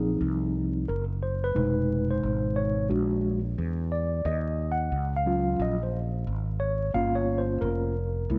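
A swung sixteenth-note groove at 89 BPM in 4/4 sets a cool, nocturnal jazz-hop mood across this 8.4-second excerpt, with vinyl crackle and light reverb in the background. A tine electric piano, mellow, clean and up front as if heard through its built-in speakers, solos throughout over a rootless Dbmaj9 followed by Fm7b5, Bbaug7, Ebm7 and Gm7b5 chords. Beneath it, a fretless electric bass adds a dark, round and punchy low end that sits direct and close in the mix.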